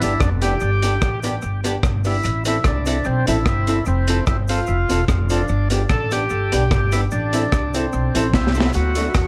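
A thick, overdriven tonewheel organ with a slow rotary speaker and tape echo leads this mischievous, energetic ska excerpt at 148 BPM with a light swing, backed by a clean, hollow-body archtop guitar with echo, a growly, woody pizzicato upright bass up front, a saturated, gritty breakbeat kit with a high-tuned snare and tight kick that drops in a fill at 8.3 seconds, and a grainy cabasa in the background, moving through G, Am and F before landing on D in a light reverb.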